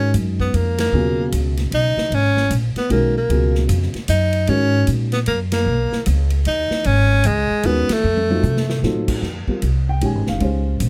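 A swinging waltz-time groove drives this cool, searching modal jazz passage, cut from a longer piece, with a breathy, bright tenor saxophone up front carrying the solo melody with vibrato and scooped notes until 8.8 s. A woody pizzicato upright bass sits up front beneath it, while a mellow, intimate baby grand piano with audible action noise and short sustain comps, dropping out at 5.1 s and returning at 7.7 s. A natural big-room drum kit with a punchy kick and snare, ride, hi-hat, crash and toms joins the band accents and plays a fill just before the harmony shifts to a new section, all in light reverb.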